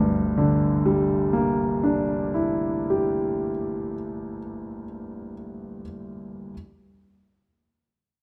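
Heard close up in a recital hall's moderate reverb, this brief fragment of mysterious, wistful impressionist classical music features a solo concert grand piano, intimate and up front with deep bass and audible action noise, playing in G dorian and opening on a Gm6 chord over its 6.5 seconds, drifting in a rubato 9/8 at 34 BPM counted in dotted quarters.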